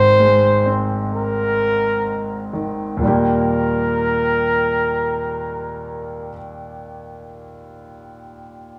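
This tender, emotional pop piece is cut from a longer piece and moves at a slow 62 BPM in 4/4 in Eb major, easing down in tempo over the first 3 seconds. A flugelhorn carries the solo melody in a jazz style, its soft attack, scooped notes and vibrato giving the narrow line between Bb4 and C5 a warm quality up front in the mix. A concert grand piano accompanies from the start, intimate and polished, with deep bass, long sustain and audible action noise. The harmony moves from Abadd9 to Eb at 3.0 seconds. The flugelhorn falls silent at 6.3 seconds, leaving the piano to ring on alone until 8.8 seconds. The players sound as if performing live together in one room, with small room ambience wrapped in a wet, large studio reverb.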